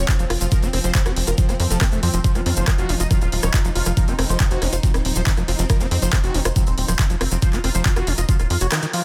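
An alien, driving slice of psychedelic trance opens on a huge detuned supersaw melody with phaser, 12-bit grit and delay over a pulsing gated chord texture, a squelchy distorted acid riff and a punchy, nasal sequencer bass up front, with an overdriven knocking kick, a techno kit of handclaps, hi-hat and rim click, and a grainy shaker in the background, while a very quiet wobbling vowel-sweep bass surfaces from 2.2 to 4.4 seconds before a band accent at 8.7 seconds in a dense, heavily limited mix.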